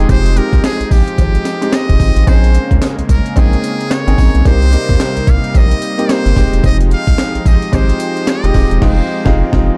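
This short cut from a longer new jack swing R&B piece opens with a muted trumpet, clear grand piano and lush, detuned unison pad sounding together over a round analog bass, all in a confident, slick F minor groove at 110 BPM with a swung sixteenth-note feel. The trumpet carries the melody with a buzzy, thin metal-mute tone and scooped notes in a jazz style, while the polished piano supplies accompaniment with short sustain and the chorused, warbling pad holds sustained chords with a slow attack and long release. The deep bass sits up front and is the loudest part, giving a sine-like, fast-attack foundation beneath the harmony as it moves from Fm9 through Bbm11 and Cm7 back to Fm9. A gritty, pitched-up, sampler-style breakbeat kit with a thumpy kick, medium-tuned snare, handclaps, hi-hat, tambourine and crash enters at 0.1 seconds, joined by a very quiet acoustic cowbell that stops at 8.4 seconds. 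The band hits an accent from 8.8 seconds to the end, all framed by a digital ambience and a dark, warm production.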